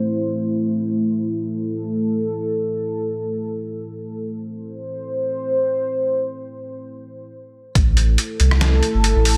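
In free time, this cavernous, meditative deep dubstep excerpt in A minor opens on a dark, detuned sawtooth analog pad with chorus holding an Am chord under a filter sweep until a stop at 7.3 s, then drops at 7.8 s into a single gritty, thumpy overdriven kick, a pitched-down trip hop sampler-style kit of hi-hat, rim click and medium-tuned snare, and a round, soft dub sub bass, all in light reverb.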